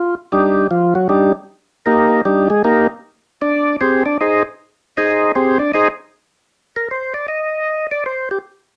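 A percussive tonewheel organ, full and clean with key click and second-harmonic percussion through a slow rotary speaker, plays up front alone from 0.0 to 8.4 seconds in this soulful, bluesy jazz fragment in C minor at 155 BPM with a swung 4/4 feel, moving from Fm11 to Cmadd9 before an unaccompanied close, set in a dark production with moderate studio ambience.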